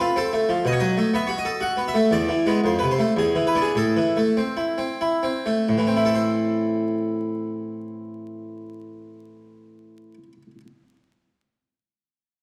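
This is a classical, baroque-style suite movement for solo harpsichord in A minor, in 3/4 and cut from a longer piece, with a grave yet flowing mood. The tempo moves freely between 86 and 125 BPM with a rubato feel, and the pulse slows from 1.4 to 5.7 seconds. The Italian-style harpsichord, with three sets of strings, sits up front and sounds full and brilliant, its plucked tone ranging from E2 up to F#5. The harmony passes through F, B5 and E7 before settling on A minor at 3.8 seconds, and a second section begins at 5.7 seconds. A recital hall's reverb, with a decay of 1.5 seconds, surrounds the instrument in a dark production touched by vinyl crackle.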